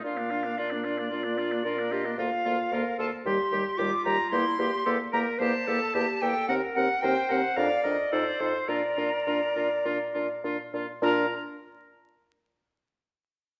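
Graceful and lively, this quick classical-period movement for wind quintet in Bb major moves at 102-113 BPM in 4/4 with a rubato feel. A pure, up-front silver flute carries the tongued, vibrato-touched melody over a clear, roomy oboe second line, while a bright clarinet with a smooth top and a mellow French horn and bassoon, both with light vibrato, fill in the accompaniment and bass. The harmony passes through a darkening Ebm6 and an F7 before settling back on Bb around 8.7 seconds, all heard in a wet recital-hall reverb with a layer of vinyl crackle.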